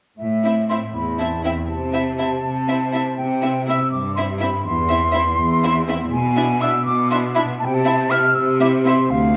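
Sneaky and mischievous, this whimsical cinematic film cue in A minor moves at 81 BPM in 6/8. A close, expressive violin section carries the melody on a single high E with vibrato, while a pure, soft-edged concert flute weaves a second line above it. Up front, a focused, clear cello section anchors the bass. In the background, a distant second violin section adds a quiet second line, and a smooth viola section supplies soft accompaniment. The harmony moves from A minor through C to E7/B and C6 within a moderate scoring-stage reverb, in a roughly 9-second excerpt cut from a longer piece.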